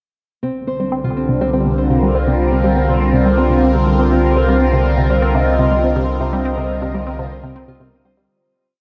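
A swirling, warbling analog pad sits up front, its detuned sawtooth chords drifting slowly through phaser, chorus and shimmer reverb over a deep, round sine sub bass holding C2 in this brief, expansive piece of sequencer-driven space music at 122 BPM in C minor, resting on Cm7. Behind them, a dark, detuned sequenced synth repeats a tight 5-step filter-pluck loop that drifts against the 4/4 bar, while a bright, thumb-plucked Celtic harp rings out a 9-step arpeggio loop through tape echo, both patterns adding to the hypnotic mood. At 5.1 seconds a mellow, horn-like synth lead with vibrato enters with call phrases between Eb5 and F5, as a fade-out from 5.7 seconds closes the piece, everything set in a moderate plate reverb.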